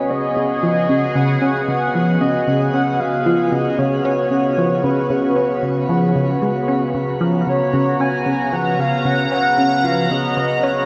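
Expansive and hypnotic, this short cut from a longer piece of sequencer-driven ambient space music sets a breathy, flute-like synth lead with vibrato, phaser, tape echo and a touch of 12-bit sampler grit up front over a bright, sweeping resonant pad holding a C#7sus4 chord and a tight, driving, wave-folded sequenced riff, all washed in a shimmering reverb with a long 8.2-second tail.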